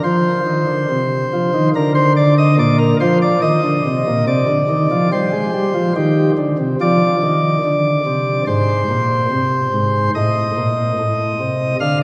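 A long, wet cathedral reverb with a 4.5-second decay surrounds this serene, majestic classical chorale, heard from further back in the room in a short cut from a longer piece. A chamber organ plays alone from 0.0 to 12.0 seconds on a full principal chorus, its chamber voicing carrying a touch of pipe chiff as it spans Ab2 to F5. At a stately 71 BPM in straight 4/4, the harmony moves through Bb/D, Cm, Fm and Adim.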